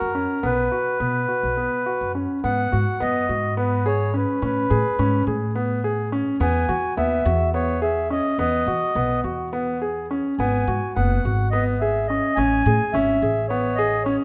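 Restless yet hopeful, this contemporary chamber piece moves in 7/8 at 212 BPM in eighths, with a reedy, round accordion carrying the melody over intimate grand piano arpeggios, where the action noise can be heard, and a woody, dark pizzicato upright bass, all three up front in a moderate recital hall, as the harmony cycles through G#m7, Amaj9, Eadd9 and a rootless C#m11.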